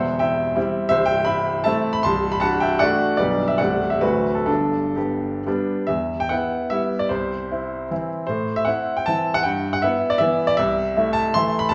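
This classical piece is a Romantic triple-time dance in 3/4, proud and graceful, taken from a longer work. A solo baby grand piano plays throughout, its clear, intimate tone sitting up front with audible action noise that gives the playing a natural, close-up character. The rubato feel lets the tempo move between 116 and 175 BPM, and dotted rhythms give the dance its lilt. The opening phrase stays in G major, moving through chords such as D7 before settling on G, then turns to E minor at 5.9 s for a contrasting passage through C, Am and Em. The piano spans from the deep bass up to the upper middle register, and a wet recital hall reverb, heard from further back in the room, surrounds the sound.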